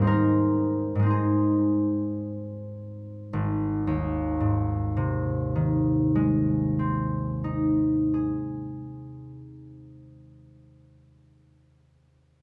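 Close, detailed microphones in a wet recital hall with a 1.6-second reverb frame this serene, peaceful classical excerpt for solo concert harp, whose warm, ringing, fingerpicked tone sits up front across a span from Ab1 to Bb4, flowing in a rubato 3/4 that slows through the opening 3.3 seconds before a new section unfolds until 10.0 seconds.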